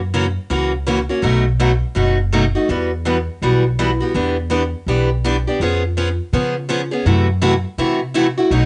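A lo-fi home cassette recording with light reverb and a dulled top end frames this short, fiery cut of acoustic string swing in E minor, moving at 165 BPM with a lively swung feel. A bright, boxy parlour-style steel-string guitar sits up front handling the accompaniment, its picked playing carrying audible finger squeak and a tape-worn character, while a woody, thumpy pizzicato upright bass underpins it from the start. The harmony runs through dominant-seventh changes such as F#7 and B7 before shifting at 4.1 seconds to a second section that passes through Em7 and C#7/E# to end on F#m7b5.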